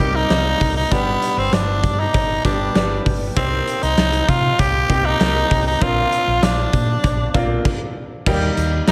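A raspy, gritty tenor saxophone with vibrato carries the melody up front from the start, its lines trailed by delay, over a clear, polished baby grand piano with subtle chorus, a round, punchy hollow-body bass and a big rock kit with a fat snare, punchy kick, hi-hat, crash and tambourine. A very quiet, metallic cowbell enters at 0.3 seconds as this uplifting, glossy 1980s-style pop fragment moves from Cm7 through G and Bbadd9, and the band hits a stop at 7.7 seconds before landing on Eb. Plate reverb soaks the whole mix in a dreamy sheen.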